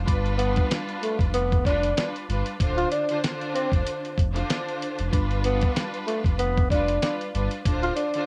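A lush, bowed string section and a deep sine sub bass with an added octave open this dark, tough boom-bap hip-hop fragment, and a sampler-style drum kit arrives at 0.1 seconds. The drums are compressed and gritty, with a thumpy kick, a fat snare and hi-hat sitting up front at 95 BPM in 4/4 with a light 16th-note swing. At 0.4 seconds a breathy tenor saxophone takes the melody in a close-miked, jazz-style solo full of subtone, scooped notes and vibrato, colored by filtering, cassette tape and analog delay. Behind it the strings play as a close, even ensemble with smooth vibrato, also filtered and tape-treated, while the harmony alternates between G7 and Dm7. Recorded at home on cassette with little reverb, the piece feels intimate and dry, and it breaks off at 8.3 seconds as part of a longer track.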